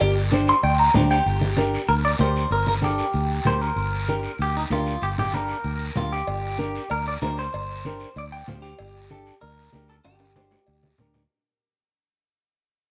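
A lightly reverberant, vintage-toned cumbia excerpt in G minor moves at a danceable, fiery 191 BPM, led by an up-front, twangy clean electric guitar soaked in spring reverb and slapback echo that solos briefly over a G5 chord before the harmony settles on Gm at 1.3 seconds and the track begins fading out. Beneath it, a round, dark, foam-muted fingered bass holds the low end, a small fingerpicked nylon-string guitar comps in the middle register, and damped, low-tuned congas with soft hands join a raspy guiro. Ringing metal cowbell and timbales sound briefly at the start and return at 6.3 seconds, and a drum fill arrives at 10.0 seconds.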